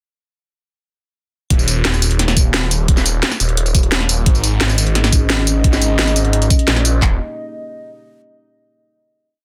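Dark technical drum and bass at 174 BPM, this short, mechanical and aggressive piece drops in at 1.5 seconds with up-front electronic drums: a knocking kick and handclaps layered with a cracking snare, bright hats and tambourine, all carrying a small-room character. A swirling, thick detuned saw bass with phaser, overdrive and sidechain pumping delivers chopped phrases low in the register, joined at 4.3 seconds by a deep, moody analog pad with subtle chorus on an Absus4 chord. The piece resolves to a final Eb chord at 7.0 seconds, all in a dense, heavily limited modern master with light reverb and digital ambience.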